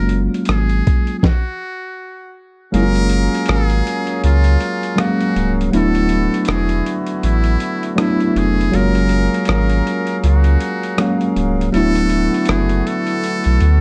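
A dreamy, nostalgic lo-fi hip hop excerpt opens with a buzzy, metal-muted trumpet playing a jazz-style melody with light vibrato, over a worn, slightly out-of-tune tine electric piano with cassette-tape coloring and a deep, up-front sine sub bass, as a gritty, compressed sampler-style kit of hi-hat, thumpy kick, rim click and fat snare joins at 0.1 seconds before a stop at 1.2 seconds. From 2.7 seconds a reedy, smooth accordion adds sustained chords while the kick stays muted, and very quiet finger snaps in a live room come in at 3.5 seconds. The swung groove sits in a dark production with light reverb, moving between F#maj9 and D69 chords.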